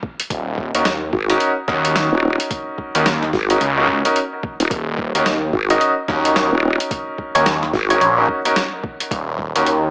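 A thumpy, pitched-down electronic kick opens this gritty, playful glitch hop excerpt at 109 BPM in Eb minor pentatonic, with swung 16ths over an Ebm7 chord, soon joined by a tape-toned boom bap kit with hi-hat and a medium-tuned snare, plus a thick, swirling phased saw bass. A brilliant baby grand piano sits up front with pumping stabs and analog delay, while a nasal, resonant vowel-sweep wobble bass with chorus holds the low end until 8.0 s. Near 5.7 s a mellow, woody wave-folded pluck adds a brief melody in the background, and the mix carries moderate spring reverb with an echo-heavy, small-speaker sound.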